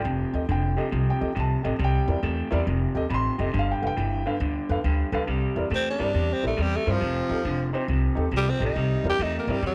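A small room with light reverb frames this short blues, cut from a longer piece, which rolls along with a swaggering, rollicking swing. From the start an upright bass sits up front, its pizzicato gut strings sounding woody and thumpy, while an electric guitar through a small old amp plays a fingered riff with a slightly broken-up, compressed, lo-fi tone. Behind them a dark upright piano adds mellow accompaniment higher up. At 5.8 seconds a growling tenor saxophone steps forward for a jazz-style solo that is breathy and raspy, with vibrato and a gritty edge. The harmony moves through dominant seventh chords such as F7, C7 and G7.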